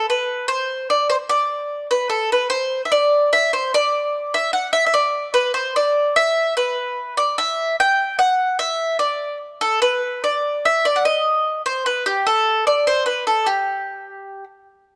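A bright, acoustic bowl-back mandolin plays alone and up front from 0.0 to 14.4 seconds, its picked double strings spanning G4 to G5 in this lively, romantic Italian folk excerpt at 148 BPM in a straight 3/4, captured by close, detailed microphones with light reverb.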